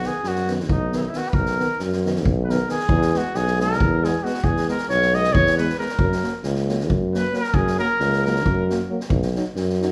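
Heard through a moderate recital-hall reverb, this wild, festive Balkan brass band excerpt in 7/8 at 270 BPM and B major moves from B to E and F# and back to B, with a soft-attacked, roomy trumpet carrying the melody up front until 8.7 s, a tuba bass and a boomy-kicked, rolled-off street-band drum kit with a high-tuned snare sitting up front, and a smooth-topped trombone and a warm euphonium filling the background.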